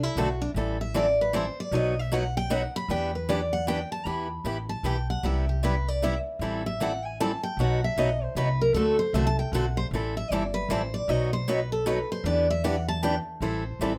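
Acoustic string swing in the jazz manouche style, this short cut from a longer piece runs at 154 BPM in a swung 3/4, in E minor, with a bittersweet yet fiery mood. A picked steel-string guitar carries the melody as a solo from the start to 13.4 seconds, its dreadnought tone bright, full-bodied and up front with fresh strings. Underneath, a second picked steel-string guitar, a boxy parlour instrument, supplies the accompaniment from 0.2 seconds, while a pizzicato upright bass on gut strings adds a woody, dark, thumpy low end. The harmony circles through minor-key changes such as Am7, B and Em7, with a Cmaj7 and D7 adding colour across two passages of the same theme. Light reverb gives the ensemble a touch of room.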